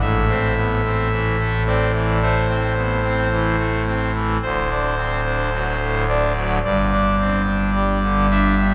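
A slow, rubato pulse around 54 BPM in 4/4 carries this short excerpt of a reverent, majestic classical chorale for solo pipe organ, its trumpet stop sounding brassy and bright with a romantic voicing placed up front. Spanning D1 to E5, the organ moves from Am through D7 to G5 across 8.7 seconds, its tone hanging in a wet cathedral reverb with a 4.3-second decay. The tuning sits at A4 = 439 Hz.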